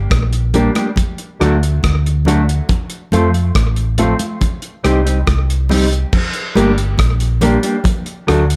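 A round, punchy hollow-body electric bass anchors this serious, meditative roots reggae excerpt in G minor at 70 BPM, sitting up front beside a cloth-damped, thuddy drum kit with a tight kick and dark cymbals, while a clean, fingered electric guitar with spring reverb and tape echo provides accompaniment, a dark, woody, boxy upright piano adds stabs over a Gm–D–F–Cm progression, and thick-skinned congas sit in the background.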